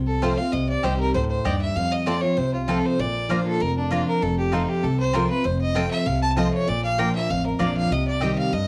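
A clear, intense fiddle carries the melody up front from 0.1 s, bowed with light vibrato and a smooth top, in this driving, haunting bluegrass passage at 195 BPM in 4/4, cut from a longer piece. A bright, full-bodied dreadnought guitar is picked up front as accompaniment, while a woody, thumpy upright bass is plucked underneath and a double-strung mandolin adds stabs with plate reverb from 0.2 s to 8.3 s. The guitar, fiddle and mandolin carry a cassette-tape character, and the home cassette recording sits in a moderate studio room over chords moving between F, Cm and Bb.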